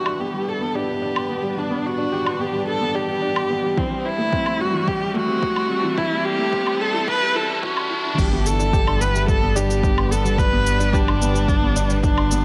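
A tender, luminous piano-and-strings electronica cut in G major at 109 BPM opens with an expressive, boxy viola melody up front over a felt-muted upright piano riff, smooth background string chords with sidechain pumping, and electronic woodblock, crash and shaker, building with a filter sweep and background riser until a punchy, overdriven kick arrives at 3.8 seconds and a round, deep analog bass joins the pumping drop at 8.2 seconds, all in a small, lightly reverberant room.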